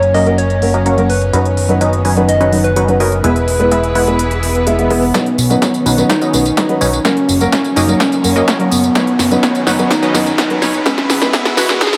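Festival progressive house at 126 BPM in B major, uplifting and triumphant, this cut from a longer track sets a round, keys-like FM synth lead with chorus and delay over detuned supersaw stabs sweeping through a filter, a fat, saturated analog bass, a muted felt upright piano and a dark, bowed chamber string section in the background, with the bass, piano, strings and stabs pumping against the sidechain. A big-room kit with crisp hats, a punchy snare, tambourine and overdrive drives the groove while a very quiet electronic swell and riser rises from 4.4 s, and a layered, overdriven electronic kick enters at 5.1 s as the build-up, drum fill and filter sweeps begin. A huge ambient reverb bathes the mix over chords moving between F#, Badd9 and E.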